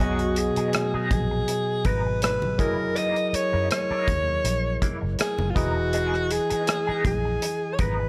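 Lush and warm, this short cut from a longer 1970s-style soul piece moves at an easy, lightly swung pace over a B6, F#13 and Emaj7 progression. A breathy alto saxophone carries the melody up front, close-miked and clear with jazz-style vibrato and a touch of tape echo. Beneath it, a barky tine electric piano supplies bright, lightly overdriven accompaniment through a combo amp, while a vintage muted fingered bass gives a round, punchy, foam-muted low end. An electric guitar through a small old amp plays a dark, slightly broken-up riff in the background, colored by wah and tremolo. A modern studio kit enters at 0.2 seconds with a tight kick, hi-hat and rim click in a small-room sound with a rolled-off top, and very quiet low-tuned congas with thick, damped skins join at 0.7 seconds, all set in light reverb.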